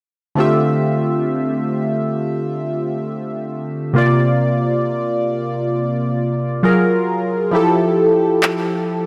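Contemporary R&B in a dreamy, romantic mood with a lightly swung sixteenth-note feel: warm analog keys carry this excerpt from 0.4 seconds, their round sawtooth tone shaped by a filter sweep, fast attacks and decaying notes, with chorus and phaser, up front in the mix. The keys move through lush extended chords, from Dm11 to C9sus4 and on to Gbmaj9 and Fmaj9. Produced electronic handclaps pop in up front at 8.4 seconds, all set in a lush hall reverb.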